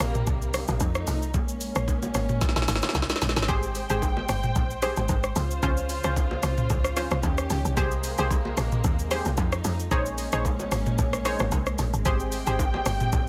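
Amapiano at 112 BPM in Ab major, soulful and warm, with a 16th-note swing under a lush, dark bowed string section holding sustained chords through progressions like Abmaj7 to Dbmaj7 and Bbm11. A woody, percussive log drum bass with a fast attack sits beneath an up-front, tape-warm R&B kit of knocking kick, snare, hats, rim click, shaker and toms, while bright, vintage bongos and congas stay in the background. After a drum fill at 2.4 seconds, a detuned sawtooth chord stab with a filter pluck, chorus and digital delay enters at 3.5 seconds in a dry mix cut from a longer piece.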